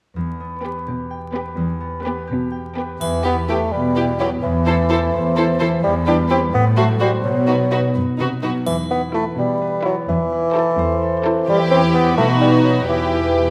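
A warm, up-front bassoon with light vibrato enters at 3.0 s and gives this mischievous, sneaky, whimsical 6/8 film cue its sly voice, joining ringing fingerpicked concert harp arpeggios, an intimate, close cello section on the bass, dark viola accompaniment and two sul tasto violin sections, a clear second line beneath a pure, floating melody that sits in the background, with two brief touches of dry triangle, the ensemble heard in a moderate scoring-stage reverb under vinyl crackle in this excerpt cut from a longer piece.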